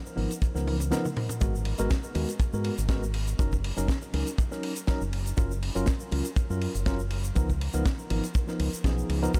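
A light sixteenth-note swing at 121 BPM in 4/4 drives this nu-disco excerpt, whose mood is cosmic and sensual. A tight, natural acoustic kit with dark cymbals and a high-tuned snare works across hi-hat, ride, shaker, snare and toms, with a drum fill from 0.7 to 1.4 seconds, while an up-front, tight kick joins at 0.4 seconds. A fingered electric bass, direct and amped through an envelope filter, sits forward in the mix with a warm tone. A clean tine electric piano heard through its built-in speakers carries the accompaniment, its chords pumping through sidechain compression and trailing delay repeats. The harmony moves through lush extended chords, from C#13 to G#m9, D#m7/F# and F#maj7 before returning to C#13, all set in light reverb and a small-room ambience.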